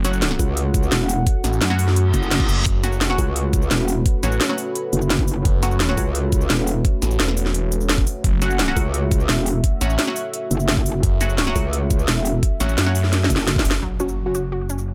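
Nearly dry, this cut from a dark technical drum and bass track drives at 172 BPM in F# minor with an aggressive, mechanical mood: a swirling, saturated phased detuned saw bass and a metallic wobble bass with chorus sit up front beside a knocking electronic kick and a drum kit of cracking snare, crisp hats and shaker, while a moody analog pad with sidechain pumping holds sustained chords and nasal band-passed chord stabs carry phaser, cassette tape and delay, with a reverse cymbal at 2.1 seconds, a drum fill leading into an impact at 13.8 seconds, and a brief, bright unison pluck arpeggio with delay at the close.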